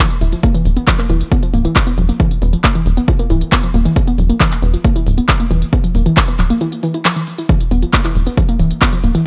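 A dry mix with little reverb opens this short cut from a longer, driving peak-time techno track at 136 BPM in a straight 4/4, tuned to A4 = 438 Hz, its mood dark and hypnotic. A warbling, lo-fi pluck riff starts the piece and plays throughout, its sawtooth, triangle and noise layers, ring modulation and short decay given chorus, overdrive, delay and sidechain pumping for a mellow, dusty character. Almost at once the techno drum kit brings handclaps and smooth hi-hats, while a tight sequencer bass, saturated and punchy with a fast filter-pluck attack and its own sidechain pumping, sits low and up front as the loudest part. The layered electronic kick drum enters at 0.4 seconds with a punchy, small-room thump that stays forward in the mix. A brief break from 6.6 to 7.5 seconds interrupts the groove before the riff, drums and bass carry on to the end.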